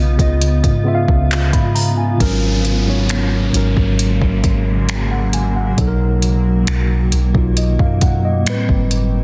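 A mellow, clean tine electric piano sits up front in this tender, romantic contemporary R&B excerpt, over a cloudy, evolving granular pad with slow attack and sidechain pumping, a deep, round 808-style bass, and a smooth, tape-warm electronic kit of finger snaps, handclaps, hi-hat and soft kick that enters at 0.2 s, while an electronic downlifter arrives at 2.2 s as the chords move from C#9 through G#9sus4 and Bmaj7 to Am9, all in a digital ambience with a dense, heavily limited modern master.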